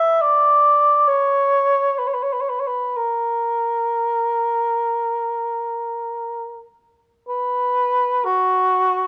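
A dark, lonely cor anglais with light vibrato carries this mournful, free-flowing classical fragment on its own, drifting in rubato between 41 and 71 BPM over 9.1 seconds, heard up front through close, detailed microphones yet still roomy in a recital hall's moderate reverb.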